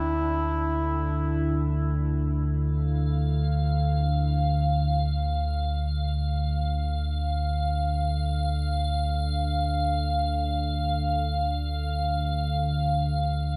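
Unfolding in free time, this dark, unsettling ambient drone fragment opens with a brief, smooth-topped folk-style duduk phrase in diffuse delay that ends at 1.7 s, while an ominous, rumbling low drone holds up front throughout and an icy, crystalline glass pad with chorus enters at 2.9 s, the mix sitting in a huge, wet reverb.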